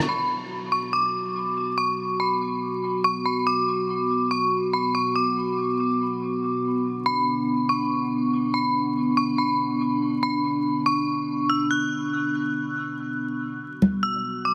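A murky, radio-compressed haze with vinyl crackle and a cavernous reverb frames this brooding, half-time deep dubstep excerpt, where an eerie, inharmonic FM synth bell with chorus, tremolo and dub echo carries the melody over sustained chords from a detuned, ring-modulated analog pad with a sub octave, while a bright, hard-handed conga hit lands at 13.8 seconds.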